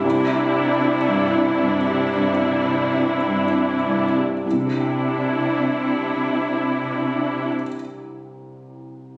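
A felt-muted upright piano sits up front in this tender, moving excerpt of cinematic film score, its soft, mellow tone close and intimate, with audible action noise, spanning C2 to G5 and sounding until 9.2 seconds. The tempo is slow and rubato, around 49 to 60 BPM in 4/4 and C major, easing back over the first 4.4 seconds before a second section begins. A viola section plays accompaniment, also up front and close, lush and expressive with vibrato and portamento, held between D4 and E4. Beneath it a rich cello section holds C3 as the bass, bowed with intense vibrato and a smooth top. Both string sections stop at 7.5 seconds, leaving the piano alone over a single Cadd9 harmony. A moderate scoring-stage reverb gives the sound, captured on a phone in the room, a gentle sense of space.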